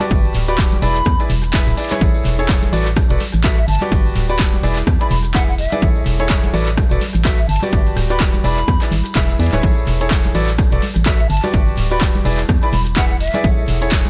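A bright concert grand piano carries this feel-good piano house clip with a joyful riff, its brilliant tone roughened by vintage 12-bit sampler grit, pumped by sidechain compression and trailed by tape echo. Beneath it, an overdriven electronic kick hits hard. A dark, organ-like FM bass with a fast, percussive attack joins at 0.1 seconds and pumps in time with the beat. A punchy analog drum machine adds handclaps, hi-hat, rim click and shaker with overdrive and echo, giving the sense of being re-recorded in a large room, while ringing congas and tambourine, played with soft hands, sit in the background with a swung sixteenth-note feel. From 0.5 seconds to 13.5 seconds, a mellow, hollow silver flute floats in the background, pure-toned and tongued with vibrato, its line echoing through a dry, echo-heavy mix. The harmony cycles through Gmaj7, E7, Amaj7 and D6, keeping the mood sunny throughout this cut from a longer piece.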